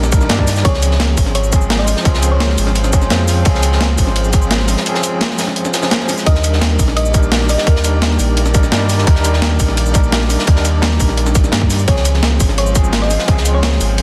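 A barky, overdriven tine electric piano with medium tremolo and delay, played through a combo amp, carries the accompaniment in this lush, warm liquid drum and bass at 171 BPM, moving between Ebmaj7 and Dbmaj7 over a deep, sine-like sub bass with octave and a thick, detuned sawtooth pad that pumps behind it. An up-front, tight electronic kick and a gritty, compressed sampler-style breakbeat kit with cabasa, hi-hat and snare drive the groove, while a dark, saturated second breakbeat kit with ride cymbal and snare sits in the background. A round, tine-like thumb-piano-style pluck drifts in with short melodic phrases at 0.7, 6.3 and 11.9 seconds, the second coming after a brief break.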